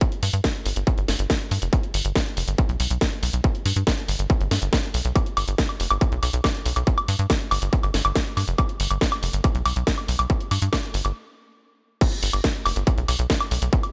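Psychedelic and driving, this psychedelic trance cut pairs a distorted, up-front electronic kick with a layered techno kit of cracking snare, warm hats, crash cymbal and woodblock, both re-recorded in a large room, over a tight, punchy sawtooth-and-square sequencer bass with a plucky filter and moving notch, all dry, pausing at 11.2 seconds before the drop hits at 12.0 seconds.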